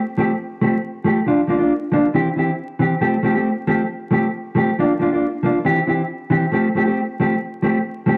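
A mellow, dark-toned electric guitar plays alone from 0.2 s to 8.2 s in this short cut from a longer highlife piece, its clean, compressed, fingered sound sitting up front and bathed in spring reverb. The mood is carefree and danceable at 137 BPM in a straight 4/4, circling through Fadd9, Bb and C in F major. A wet studio ambience and a layer of vinyl crackle give the recording a lived-in, old-record character.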